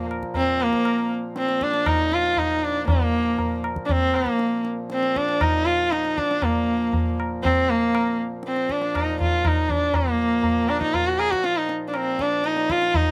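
Devotional and serene, this short Hindustani classical fragment moves at 119 BPM in a straight 7/4 in Bb major. A single bowed sarangi with sympathetic strings carries the melody up front, its nasal, focused tone gliding with light vibrato and portamento. A reedy, breathing hand-pumped harmonium holds a vintage drone in the background, and a low-tuned tabla joins at 0.1 s with short, dry strokes, all captured by close, detailed microphones in a room with little reverb.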